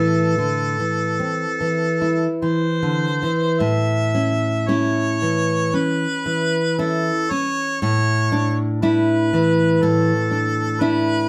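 A romantic duo excerpt, solemn and yearning in a free rubato feel, sets a distant, roomy harmonica melody with light vibrato over a bright, fresh-stringed nylon-string guitar fingerpicking a classical accompaniment that sits higher in the mix, the pair playing live together in one room with moderate studio reverb as the harmony turns from minor to major at 3.6 seconds.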